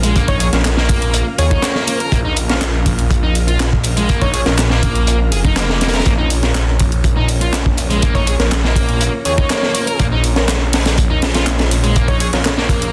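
Breakbeat with a swaggering, energetic drive, built on a gritty, saturated breakbeat kit with a high-tuned snare, layered over a house kit of handclaps, hi-hat and ride, while an up-front swirling detuned saw bass, a bright distorted electric guitar riff with delay, a quiet orchestra-hit-like synth stab, a background tonewheel organ with fast rotary speaker, sampler grit and sidechain pumping, and a catchy plucky unison lead with an old-record tint and vibrato all sit in a dense, heavily limited mix.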